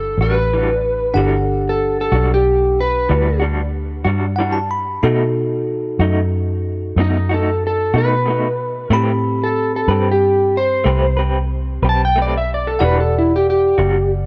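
A dark, slightly broken-up electric slide guitar carries an up-front solo through this brooding, mournful slow blues in E minor at 62 BPM in 12/8, over a round, foam-muted vintage electric bass, a bell-like tine electric piano that adds a bright, clean fill at 4.1 seconds, and a lo-fi, compressed electric guitar with tremolo through a small old amp, as the chords move from Em9 through B7 and Am9 back to Em9 in light reverb.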